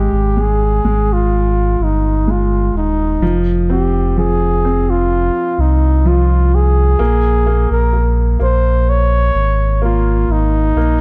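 In a straight 4/4 at a slow 64 BPM, this heartbroken, longing pop ballad fragment moves from Ab5 through F5 to Bbm7 over about 11 seconds. A mellow, close-miked flugelhorn carries the solo melody up front in a jazz style, with breathy, scooped notes and a touch of delay, while a clear, vintage-toned concert grand piano plays smooth accompaniment. Underneath, a full, sine-like sub bass with an added octave sits prominently with a fast attack and sustained notes, all in a small room ambience with a dark production.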